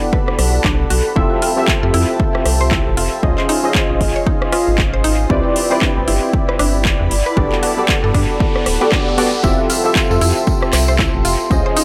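A warm analog pad, mellow chorused keys stabbing through a low-pass filter and analog delay, and a cloudy, evolving granular pad open this relaxed, sunny deep house excerpt in F lydian at 116 BPM with a swung 16th feel, the three of them pumping to the sidechain. A punchy, overdriven kick sits up front beside an overdriven house kit of handclaps, metallic hi-hats and rim clicks, while a rubbery, nasal square bass with tube saturation and a woody, bright mallet-like pluck playing arpeggios through cassette tape and dub echo fill out the echo-heavy mix over chords moving from Gmaj9 through Fmaj9, Dbmaj9 and Cmaj9. A background riser runs from 7.1 seconds into the drop at 9.4 seconds, where the granular pad stops and a jingly tambourine with dub echo joins.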